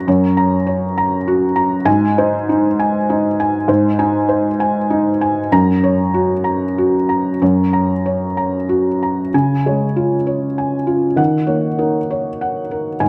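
Tender and peaceful, this short neoclassical minimalist piano piece drifts along in a rubato 6/8 at about 65 BPM, set in Db major. A single felt-muted upright piano carries everything from 0.0 to 13.1 seconds, sitting up front with a soft, mellow, intimate tone that spans from Gb2 up to Bb5. The opening passage moves through Gb, Ab and back to Gb chords before shifting at 9.3 seconds into a second passage built on Db and Ebm7. A moderate recital hall reverb gives the muted notes a gentle halo, and the dark production keeps the whole sound hushed and close. Cut from a longer piece, it feels like a quiet, private moment caught mid-thought.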